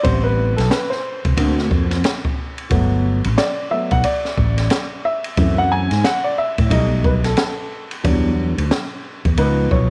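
Jazz-hop cut from a longer piece, mellow and nocturnal at 90 BPM with a swung 16th-note feel, where a dark, intimate baby grand piano solos across all 9.9 seconds, up front with vintage smoothness, long sustain and audible action noise, over a round fretless electric bass with ensemble chorus and an open acoustic jazz kit of boomy kick, high-tuned snare, hi-hat and ride cymbal in a small room, moving through chords such as Am7, Gmaj9 and Em9.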